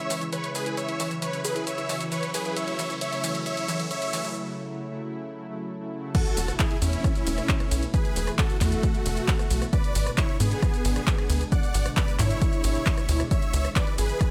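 A huge, euphoric supersaw lead carries the melody up front through this soaring, driving uplifting trance excerpt at 134 BPM in 4/4, its detuned sawtooth unison sounding full-bodied and airy, compressed, with delay and sidechain pumping. Beneath it, a tight sequencer bass built from sawtooth and square waves drives the piece with fast-attack, decaying notes through a moving notch and a high-pass filter, also pumping to the sidechain. A punchy analog drum machine, re-recorded in a small room, supplies crash and ride cymbals, handclaps, hi-hat, rim click and shaker, with the hats, percussion and cymbals pumping. The build-up opens with a lush unison pluck playing arpeggios in the background with a filter sweep and delay until 4.3 seconds, while a very quiet electronic riser climbs from 1.2 seconds into a short break. At 6.1 seconds the drop arrives with an impact and an up-front analog kick drum, as the harmony moves from C#m and F#m7 through Esus4 and G#dim back to C#m, all bathed in light reverb.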